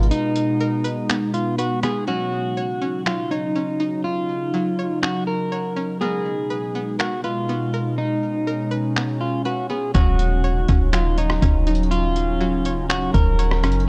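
A warbling, tape-like pad, a slightly broken-up electric guitar melody fed through delay, twangy string-like arpeggios, muffled sampler drums with finger snaps, hi-hat, thumpy kick and rim click, and a crisp kora in the background open this melancholic, hazy cloud-rap fragment in a half-time feel. A round 808 bass touches down only briefly before a break at 0.1 seconds, then stays out until 9.9 seconds, when it returns deep and up front as the harmony settles from a minor add-nine chord onto a minor seventh. The production is dark and lightly reverberant, keeping the pad, guitar and drums forward while the bright pluck carries chorus and the kora sits low beneath them.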